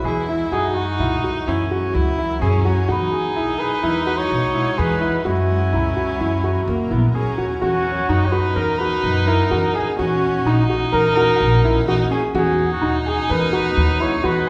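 Set in a reverberant recital hall, this hopeful chamber excerpt in 5/4 at 127 BPM in E lydian features a clear, punchy flugelhorn melody with vibrato over an earthy bowed viola second line, natural-sounding concert grand piano arpeggios, a woody, up-front pizzicato upright bass, and a shimmering, ethereal ambient pad with chorus and tremolo sustaining chords in the background, while a delicate, bell-like celesta adds very quiet texture from 2.9 to 13.7 seconds as the harmony moves from Eadd9 and F#7 to Bmaj9/E at 7.6 seconds.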